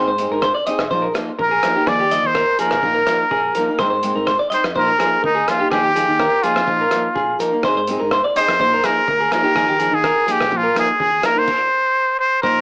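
This highlife guitar-band passage opens with a picked steel-string acoustic guitar playing the accompaniment and a clean semi-hollow electric guitar spinning arpeggios through plate reverb, while a round, punchy fingered bass sits deep in the background. A cloth-damped, thuddy drum kit joins at 0.2 seconds, its tight kick, rim clicks, hi-hat and dark, muffled crash cymbals sounding gritty and saturated with a rolled-off top. At 1.4 seconds a trumpet with a straight mute takes the melody up front, nasal and breathy with a soft attack, vibrato and a close, whispered, jazz-style intimacy. At a straight 125 BPM in 4/4 and in Bb mixolydian, the music cycles through Ab, Bbsus4 and Ebsus2 chords until the harmony drops away near the end. Cassette tape colours the guitars, drums and trumpet, and the home-recorded, small-speaker sound gives this danceable, warm fragment of a longer piece a lo-fi, homespun charm.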